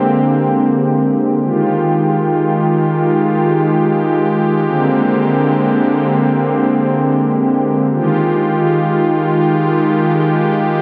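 Cut from a longer piece, this spacious, melancholic hip hop passage in free time and F dorian features a solo analog pad, detuned and warbling with a soft attack and long release, sitting up front with chorus and tape echo in an echo-heavy mix with moderate spring reverb as it moves between Bb13 and Fm9 before settling into a new section at 7.9 seconds.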